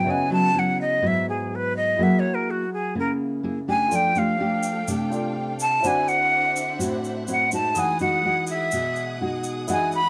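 This relaxed, romantic bossa nova excerpt in straight 4/4 time is led by a breathy, bright jazz flute that carries the melody up front, with vibrato, a crisp attack and an audible chiff. Beneath it, a full-bodied nylon-string guitar is fingerpicked with a deep classical tone, while a warm baby grand piano sits in the background, intimate and close enough that its action noise can be heard. At 3.9 seconds a lush symphonic string section enters with soft-attack bowed chords, and a grainy, bright tube shaker joins the percussion, sounding as if it were played in a live room. The harmony moves through C#m11, F#9, F69, D9 and Emaj9, and a moderate studio reverb gives the whole ensemble a polished sense of space.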